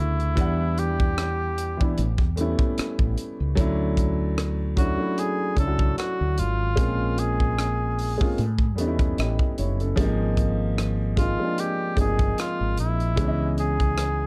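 R&B and neo-soul at a relaxed 75 BPM with a lightly swung 16th-note feel sets a sultry, late-night mood in this excerpt, as a mellow cor anglais carries the melody with light vibrato and classical poise over a woody upright piano, whose action noise is audible, and a round, dark fretless bass bathed in lush chorus, while a tight funk kit of hi-hat, kick and rim click sits up front, all moving through chords such as Em7, A7, Dmaj7 and C#m7 in a dusky production with light reverb.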